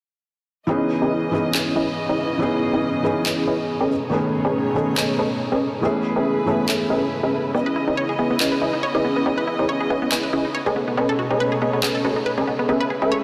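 Opening at 0.7 s, a soft felt-muted upright piano with audible action noise and tape echo plays accompaniment beside veiled, con sordino chamber strings holding dark sustained chords and a punchy, detuned supersaw stab riff through a low-pass filter, while produced electronic handclaps enter in reverb and a lush unison pluck joins with tape-echoed arpeggios from 7.5 s, all shaping an emotional, dreamy future bass passage at 140 BPM in half-time over C# minor harmony from C#m9 to B13 and Amaj9/C#, bathed in a huge ambient reverb and a dense, heavily limited master.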